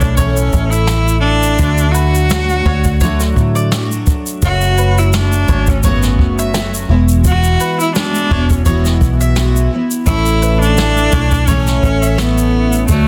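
Easy-going and carefree, this acoustic pop excerpt in A major moves at 85 BPM with a light sixteenth-note swing, as a clear, close bowed cello with vibrato carries the melody up front over a full-bodied, double-tracked picked jumbo steel-string guitar, a dark, round, punchy foam-muted electric bass, a jazz brush kit with boomy kick, shaker and a softly clipped snare, and a bright bowl-back mandolin playing arpeggios with tape echo in the background from 0.2 to 12.4 seconds, all in studio reverb through a dense, heavily limited modern master as the chords pass from A through D, F#m and Eadd9 back to A.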